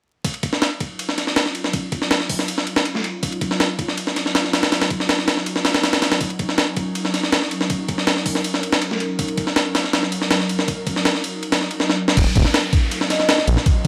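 A gritty, pitched-up breakbeat kit opens this raw, frenetic drum and bass cut at 161 BPM in Eb minor, its thumpy kick, high-tuned snare, hi-hat, ride and crash sitting up front in a small, tape-warm room over a bed of vinyl crackle. An ethereal, airy pad holds sustained chords behind it, softened by chorus, phaser and reverb, while an electronic swell and downlifter enter in the background ahead of a drum fill. At the drop at 12.2 s, a thick, beating detuned saw bass enters with menace, and a single metallic, ringing vibraphone note carries a dub echo at 13.1 s.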